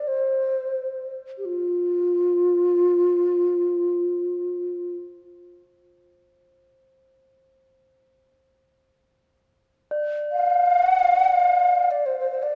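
A worn, warbling cassette sound with drifting pitch wraps this short cut from a longer piece in a wet recital-hall reverb and small-room ambience. It is haunting, spacious world meditation music in free time, tuned to A4 = 444 Hz. A close-miked bamboo xiao carries the melody up front throughout, airy and mellow with expressive vibrato and a soft attack. In the background, a bronze singing bowl struck with a wooden striker rings with a bright, metallic tone and slow beating, sounding at the start and again from 9.9 seconds to the end at 12.6 seconds.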